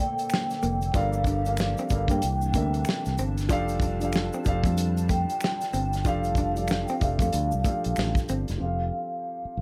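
Lightly reverberant and intimate, this smooth, relaxed neo-soul R&B excerpt at 94 BPM in F major swings gently in 4/4, with a vibraphone played with soft mallets carrying a ringing melody with fast motor vibrato over a dark concert grand piano whose action noise is audible beneath a faint, flute-like hollow pad. A clean, picked hollow-body jazz guitar adds a second line. An up-front soul drum kit with a fat snare and tight kick, close, dry egg shaker and finger snaps, and a punchy fingered electric bass entering at 0.6 s move through Bbmaj7, Gm7, C13 and F69. At 8.6 s the drums, percussion and pad drop away, leaving vibraphone, piano and bass to settle on Fadd9.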